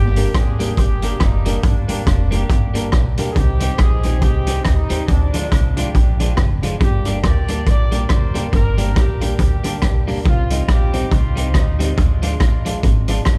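Driving and energetic, this ska excerpt swings along at 139 BPM, with a gritty, punchy garage drum kit up front, a thumpy pizzicato upright bass underneath, a slightly broken-up electric guitar bathed in lush chorus, a dark, slightly detuned upright piano adding stabs with audible action noise, and a mellow, distant horn section carrying the melody through tape echo, all cycling over Gm, Cm and Ddim chords in light reverb.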